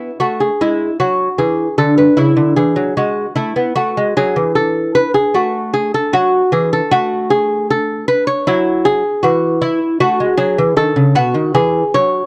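A dry, close recording with a 1970s studio character and the faint ambience of a small room places a solo lute up front for this brief passage cut from a longer baroque-style dance. Fingerpicked on gut double strings, some doubled at the octave, the lute sounds delicate and warm, moving in a gentle rubato through a serene, radiant progression from E7/G# to A5, then settling toward E by way of Eadd9 and B7 from 8.5 seconds.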